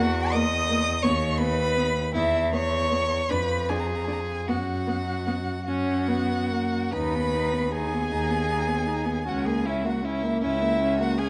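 Warm and serene, this slow romantic movement for string quartet unfolds at 51 beats per minute in 6/8, its beats uneven and pulled by rubato in B major. It is cut from a longer piece, and all four players bow together from the opening second to 11.3 s. The first violin carries the melody high above the others with vibrato, gliding portamento and an expressive, somewhat distant voice, while the second violin sings a smooth, even second line beneath it. The viola fills the accompaniment with a warm, even tone, and the cello anchors the bass with a rich, focused sound that sits up front. A passage of shifting harmonies, including a diminished chord, gives way at 6.9 s to a new section built around B/D# and C#m6. Close, detailed microphones and light reverb capture the intimacy of the ensemble.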